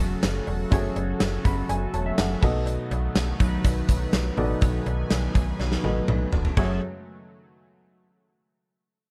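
Moody and urgent, this short 1980s-style pop excerpt in F# minor moves at 123 BPM in a straight 4/4, shifting from F#madd9 to B7 before returning to F#madd9 near 6.6 seconds. A punchy, gated drum kit with bright cymbals sits up front beside a snappy, metallic FM slap bass, while a dark, intimate baby grand piano with audible action noise plays accompaniment and a fill around 1.2 seconds. Bold, brassy analog synth stabs with chorus and a smooth, chorused pad in the background fill out the sound, a very quiet close cowbell adds metallic color, and a drum fill at 5.6 seconds leads into the next section in an otherwise dry mix.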